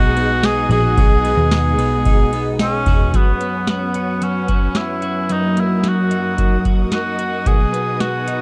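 A booming analog drum machine sits up front in this hazy, haunting dream pop fragment at 111 BPM, its dry, deep kick, tonal snare and metallic hats joined by ride cymbal and tambourine from 0.2 seconds. Over it a cor anglais carries a classical-style solo melody, placed forward in the mix with a digital delay trailing its warm line. A bright, twangy twelve-string electric guitar picks clean, compressed arpeggios through analog chorus and digital delay, while a string machine voiced as cellos holds full-bodied, sawtooth chords with a sub octave, slow attack and long release, thickened by ensemble chorus. A vintage foam-muted picked bass adds a dark, round low end only until 3.1 seconds, when the harmony moves from G#m7 to F#sus4, then D#m/F# and finally B. Light reverb and digital ambience wrap the dark production, and the clip is cut from a longer piece.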